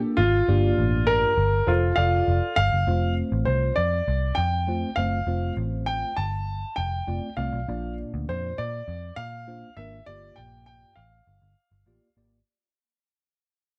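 A dry recording of uptempo 1960s-style soul at 100 BPM in F major, cut from a longer piece and fading out from 2.9 s onward, with an uplifting, warm mood. An intimate grand piano carries the melody up front, its action noise audible and its notes ringing with long sustain, while a worn, slightly out-of-tune tine electric piano sits lower in the mix as accompaniment through analog chorus. A dark, round, foam-muted picked electric bass stands up front beneath them as the chords move from Gm7 to F, Bb and back to Gm7.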